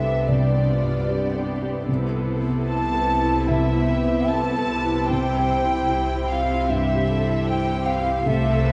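Moving and hopeful, this cinematic fragment drifts at a rubato 75 BPM in C major, its chords shifting from G/C to Asus2/C before settling on C at 5.1 seconds. A dark, woody violin section carries the melody from the background while an airy, hollow concert flute and a close, intimate second violin section share a higher line, over a smooth-topped viola section and a soft, felt-muted upright piano. A rich, floating cello section and a distant double bass section form the bass on a low C, and the whole is heard from further back in a wet scoring-stage reverb with a rounded top.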